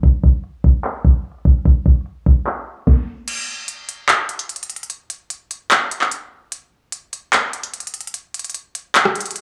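Filtered and lightly reverberant with a small-room ambience, this short, hard-hitting and melancholic half-time hip hop cut is carried entirely by an up-front electronic trap drum kit with 12-bit sampler grit, its knocking kick, sharp snare, crisp hi-hats, handclaps, rim clicks and crash cymbal moving through a filter sweep before a break at 3.3 seconds, with the kick dropping out at 8.1 seconds.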